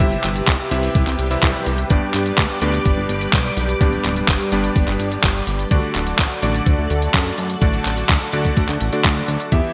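Melodramatic and nostalgic, this italo disco excerpt moves at 126 BPM in a straight 4/4, with a lush string machine holding sustained chords through ensemble chorus while a clear, clangy electric grand piano plays stabs with delay over a chord progression from C to G at 1.9 s and D at 5.7 s. A glossy, chorused synth bass anchors the low end beneath an up-front 8-bit digital drum machine of cabasa, handclaps and hi-hat bathed in gated reverb, and a thumpy, overdriven electronic kick. A very quiet electronic swell sounds briefly at 1.2 s, all set in a bright 1980s-style digital production with a moderate plate reverb.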